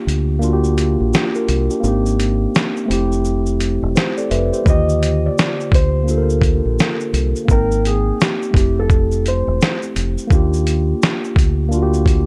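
This lo-fi hip hop excerpt has a hazy, lightly reverberant sound, with the electric piano colored by cassette tape and a low-pass filter. A mellow tine electric piano, clean and heard through its built-in speakers, carries the accompaniment from the start, moving through lush major ninth chords, the first voiced rootless. Underneath, a deep dub fingered electric bass sits up front with a dark, round tone. A gritty sampler-style drum kit with vintage 12-bit character supplies a thumpy kick, fat snare, hi-hat and shaker, compressed and re-recorded in a small room, all on a swung sixteenth-note feel. After an opening break, a felt-muted upright piano enters at 4.7 seconds and carries the melody until 9.8 seconds, its soft, intimate tone thickened by felt, with audible action noise, a low-pass filter and analog delay. The mood is nostalgic throughout.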